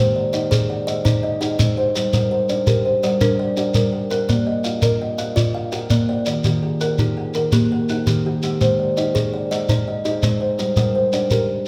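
Southern African traditional music in an mbira-style interlocking cycle, this hypnotic fragment moves at 111 BPM in a straight 12/8 through Ab, Gm, Bb and Eb. Two kalimbas spin arpeggios across the whole passage: one hollow-boxed, mellow and ringing with an airy fingertip pluck sitting up front, the other a solid-board instrument with a bright, short thumbnail pluck. A grainy shekere enters at 0.3 seconds, close and dry, while the kalimbas bloom in a large studio reverb, like a band playing live in one room.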